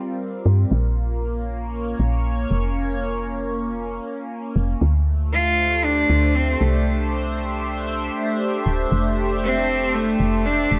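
A bright, biting cello carries the melody from 5.3 seconds, a single bowed player with intense vibrato, its line trailed by delay and sitting up front in the mix. This IDM excerpt moves at 117 BPM in 4/4 with a swung sixteenth-note feel, and the mood is melancholic and glitchy. From the opening, a phased analog pad holds sustained chords, its detuned sawtooth tone swirling and warbling with a vintage character through phaser and chorus, rising slowly into place. A woody FM bass joins at 0.5 seconds, soft and round yet dark, with a fast attack that then decays. The harmony passes from Gm7 to Bbm and then to Dm7, all set in light reverb with a small room ambience.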